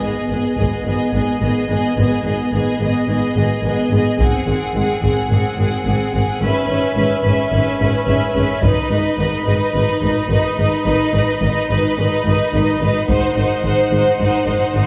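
Straight 4/4 drives this relentless, dramatic, epic orchestral film-score build-up, where a distant, clear violin section carries the melody over an up-front, focused second violin line, an intense viola accompaniment, expressive double basses and a smooth cello section in the background, while a close, dry taiko ensemble with heavy sticks sounds briefly at 0.6 seconds and returns from 4.2 to 9.7 seconds, within a moderate scoring-stage reverb.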